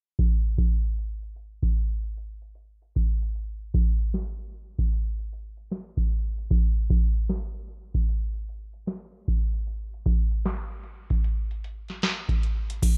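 A nostalgic, mellow hip hop groove with a swung sixteenth-note feel, carried by a booming analog drum machine set up front, its deep kick, crisp snare, metallic hi-hats and crash cymbal sounding as if re-recorded in a small room, all in a dry, rough home-demo mix softened by a low-pass filter and a filter sweep running from 0.2 to 12.8 seconds of this short cut from a longer piece.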